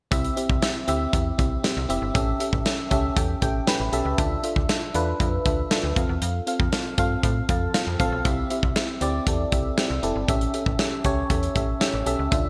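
A glassy FM electric piano with a bell-like attack and a faint noise layer sits up front, its chorused chords carrying this glossy, romantic stretch of 1980s-style pop in C major at 118 BPM, with a fill at 2.7 seconds and another later on. Beneath it, a snappy, slap-like FM bass with a metallic attack holds the low end, while a modern studio drum kit keeps a straight 4/4 beat with a punchy kick, a medium-tuned snare and hi-hat, set mid-forward in a studio room. The harmony moves through C, A7, Dmadd9 and F before returning to C and A7. A band accent arrives at 6.2 seconds, and a very quiet, dark synth brass stab with a detuned sawtooth tone and a filter sweep appears briefly at 7.6 seconds. Moderate plate reverb and bright digital production give this cut from a longer piece a polished sheen.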